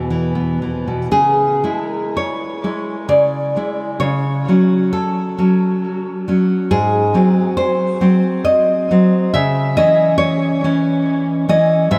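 Soaked in a huge, dreamy reverb with a 4.8-second tail, this nostalgic fragment of a romantic solo classical guitar piece in C# minor drifts in rubato 3/4 at 54-71 BPM, its fingerpicked nylon-string guitar sitting up front with a full-bodied, fresh-stringed tone and a diffuse ambient delay, opening on a lone E5 before moving from C#m at 1.1 seconds through F#m/C# and G#7 back to C#m at 9.3 seconds.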